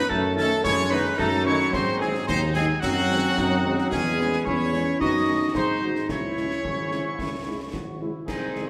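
Stern and resolute, this short excerpt cut from a longer military-style march for wind band moves at 110 BPM in a straight 2/4, set in C# minor and tuned slightly high at A4 = 441 Hz. A bright trumpet section carries the melody with light vibrato, while a pure, tongued piccolo sings a high, expressive second line above it and drops out at 8.0 seconds. Further second lines come from a clear, soft-attacked woodwind section that sounds distant and roomy, and from a mellow euphonium sitting in the background. Beneath them, a warm trombone section holds smooth sustained chords, a close-miked French horn section adds very quiet accompaniment, and a tuba anchors the bass with light vibrato. Concert bass drum, snare drum and dark clash cymbals stay in the background, while the harmony moves through diminished and dominant colours before settling on C# minor near 6.1 seconds, all heard in a wet recital hall reverb.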